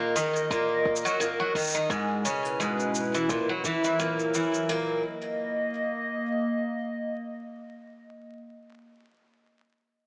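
Gently swung sixteenths in 4/4 carry this delicate, warm folktronica fragment: a warbling, nostalgic, lo-fi tape-like pad with chorus and phaser holds slow-attack chords until 8.2 seconds, a bright, woody, octave-doubled twelve-string acoustic guitar picks shimmering arpeggios through a low-pass filter and digital delay until 5.0 seconds, and a soft electronic kick and produced shaker sit low in studio reverb, all within a moderate echo-chamber space tinted by vinyl crackle and a small-speaker sound.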